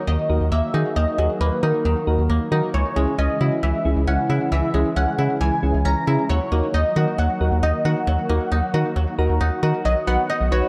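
This driving, melancholic pop piece, cut from a longer track, moves at a straight, steady pulse under a dark production with moderate plate reverb. A punchy, detuned polysynth carries the melody with a funky, filter-plucked sawtooth tone, colored by chorus and tape echo. Beneath it, a deep, round analog bass sits up front, while soft electric-piano-like synth keys add mellow, gently decaying accompaniment with their own chorus shimmer and a short fill from 9.0 to 9.9 seconds. A koto played with fingerpicks adds woody, acoustic arpeggios touched by tape echo, and a silky vintage string machine holds slow-blooming chords in the background through an ensemble chorus. The harmony moves from D#m to C#m and back before landing on B near the end.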